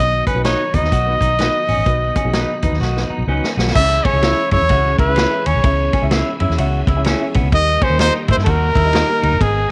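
A small room's light reverb surrounds this passionate, urgent excerpt of uptempo 1960s-style soul in C# minor at 127 BPM with a swung feel, where a clear, close-miked trumpet sings the melody up front with light vibrato and scooped notes over a dark, woody upright piano, a piping tonewheel organ with key click and slow rotary, a round, foam-muted fingered bass, a slightly broken-up lo-fi guitar riff, hollow-body clean guitar stabs and a vintage kit with dark cymbals whose fill from 2.8 to 3.8 seconds leads the chords from B into C#m.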